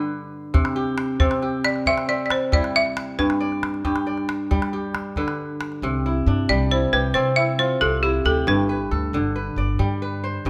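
A 12/8 pulse moves at 91 beats per minute, counted in dotted quarters with a straight feel, in this hypnotic and joyful piece of West African string and xylophone music in C major, tuned to A4 = 443 Hz and cut from a longer performance. Up front, a crisp, ringing kora spins fingerpicked arpeggios across a broad span from G2 to D5 for the whole passage, with a warm tone. A small calabash adds close percussion from 0.5 seconds, and the balafon soon brings the melody, its woody, buzzing bars struck with hard rubber mallets and kept dry and mid-forward between G4 and E5, a touch louder than the other parts. The harmony sways between G and C. At 5.8 seconds the calabash stops and a dark pizzicato upright bass with steel strings takes over the low end, reaching down to G1, while the balafon line runs until 9.3 seconds. A moderate recital hall reverb surrounds the players with a natural sense of space.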